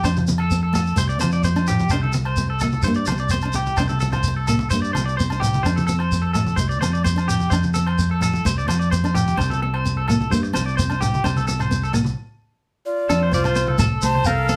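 This danceable highlife guitar band fragment opens with twangy, slightly broken-up electric guitar arpeggios pulsing through tremolo over a punchy fingered electric bass, ringing agogo bells, and a grainy shekere, joined almost at once by full-bodied fingerpicked nylon-string guitar with audible finger squeak and low-tuned congas struck with hard hands in the background. The band plays live together in one room with a wet studio ambience, and the groove halts in a stop at 12.2 s. At 12.9 s a breathy clay alto ocarina takes the melody with unsteady vibrato and tongued chiff, while a warm pop-style trumpet carries a second line.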